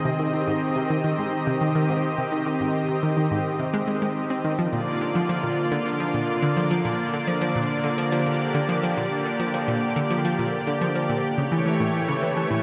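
A steady, straight 4/4 pulse at 106 BPM drives this expansive, mysterious passage of ambient, sequencer-driven space music, cut from a longer piece and moving through Ab, Bb and A7 chords. An up-front, thick, warbling pad of detuned sawtooth unison voices holds sustained chords from the start, its slow attack and long release dressed in chorus and shimmer reverb, while a round, bright analog pluck enters at 0.1 seconds with a riff, its fast-attack sawtooth, square and triangle tones, noise layer, ring modulation and filter sweep treated with chorus and tape echo. The whole mix floats in a vast, wet reverb with a 9.1-second decay and carries a cassette-tape character.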